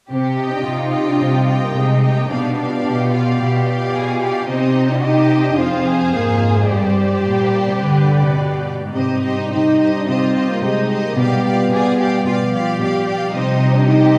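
A fast, rubato pulse at 109 BPM in 4/4 drives this stormy, urgent C minor excerpt from a romantic symphonic movement, its harmony moving through Cm, G7/B, Fm and a Gsus4 that resolves to G before returning home. A close, smooth violin section carries the vibrato melody from 0.4 seconds, supported by a lush second violin line, a distant, focused viola accompaniment and a rich cello bass, while a dark, soft-attacked horn section holds sustained chords. A mellow concert harp rings out arpeggios in the background, and a wet scoring-stage reverb gives the whole a church or concert-hall spaciousness.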